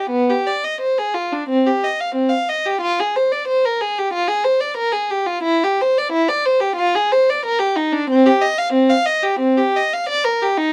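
A rich, focused solo violin sits up front through this short excerpt, bowed by a single player with vibrato across a range from B3 to F5. The music is a baroque-style suite movement for unaccompanied violin, solemn and flowing in mood. It moves at 91 BPM in 4/4, though the phrasing is rubato and breathes freely around the beat. Tuning sits slightly low, at A4 = 439 Hz. A light reverb surrounds the instrument, and the production leans dark and warm across the brief 10.7-second fragment, cut from a longer piece.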